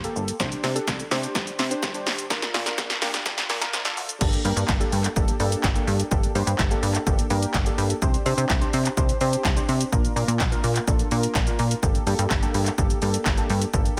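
A filter-swept build-up and a drum fill from a punchy analog drum machine open this energetic, confident dance-pop excerpt alongside detuned sawtooth keys and a plucky, funky bass, before the drop at 4.2 seconds, where the up-front kick, softly clipped snare, handclaps, hi-hats, shaker and crash drive on over sidechain-pumped bass and dark, round, chorused keys cycling through Csus2, Bb and Gmadd9, set in a dense, heavily limited mix with light digital reverb.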